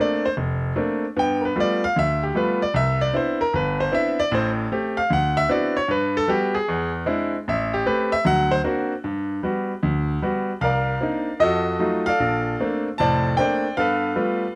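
Swinging and genial, this brief solo jazz passage cut from a longer piece moves at 152 BPM in 4/4 with a swung eighth-note feel in G major, as a bright, brilliant grand piano sits up front and natural through close, detailed microphones and light reverb, ranging from F1 to A5 across rich chords such as Bbmaj9, G9, Cmaj9, D13, Eaug7 and F7b9, with its opening phrase giving way at 9.0 seconds to a new passage that returns to Bbmaj9 and G9 before the cut at 14.6 seconds.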